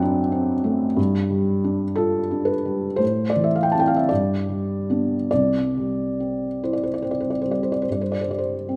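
Serene and tender, this short fragment of a romantic nocturne for solo piano unfolds with a gently flexible rubato in a steady four. A felt-muted upright piano carries the whole passage from 0.0 to 8.8 seconds, its tone soft, mellow and dark, with the thick felt dulling each note into something hushed and intimate. The instrument sits up front, spanning a range from C2 to F#6, so deep bass notes and high treble both colour the texture. The harmony drifts from D7/F# through G5 and Am before settling on G and then C at 5.3 seconds, giving the phrase a sense of quiet arrival. A moderate recital hall reverb with a 1.6-second decay surrounds the close, muffled piano with a gentle halo of space.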